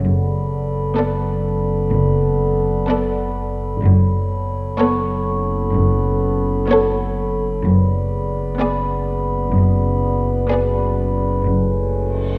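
Cinematic, ominous and eerie, this excerpt opens on a bed of sustained chords from a glassy, ethereal glass harmonica and a mellow, distant French horn section, over a dark double bass section, a rich cello section and an up-front, warbling analog drone with chorus, while a soft-mallet vibraphone adds metallic, ringing texture in the background. At 1.0 s two chamber violin lines enter, one carrying an intimate sul tasto melody with light vibrato and the other a second line, joined by a smooth viola section in accompaniment. The harmony drifts uneasily over a held bass note, and a huge, bright cymbal swell arrives at 11.8 s, all set in the moderate reverb of a scoring stage with a dark production.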